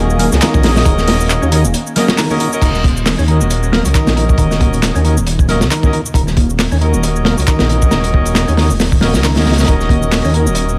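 Breakbeat in Eb minor at 136 BPM with a swung 16th feel, this gritty, energetic excerpt pairs a crunchy, saturated breakbeat kit and a dry, overdriven analog drum machine with faint bright congas, a deep, rumbling detuned saw bass up front, a percussive tonewheel organ riff with chorus vibrato, overdrive and dub echo, and jazz-style horn stabs roughened by 12-bit sampler grit, while a swirling, nasal phased pad holds sustained chords very quietly until 2.6 seconds.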